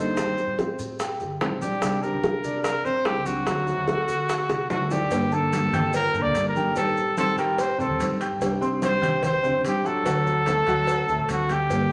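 A vibrato-laden solo trumpet sits up front with the melody in this sultry, danceable excerpt of Cuban son and guajira, carried by dark, thumb-plucked nylon-string guitar, boxy concert grand piano arpeggios with long sustain, a growly pizzicato upright bass, tight high-tuned bongos and cowbell, damped congas in the background and grainy maracas, while a large studio reverb and vinyl crackle color the mix and a drum fill at 4.5 s leads into the second section at 5.1 s.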